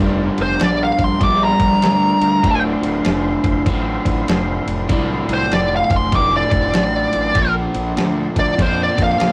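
Smoky, gritty blues rock in a power-trio and southern rock vein swings at 98 BPM in D minor, as a bright, overdriven lead guitar enters up front at 0.4 s to solo over a crunchy, double-tracked picked riff guitar, a round, punchy fuzz bass, a compressed sampler-style kit of thumpy kick, medium-tuned snare and ride cymbal, and a very quiet, thick tonewheel organ holding sustained chords through a slow rotary speaker, all in a rough rehearsal-room recording with short booth ambience and warm saturation while the harmony moves from Gm7 to Dm7 to Bbmaj7.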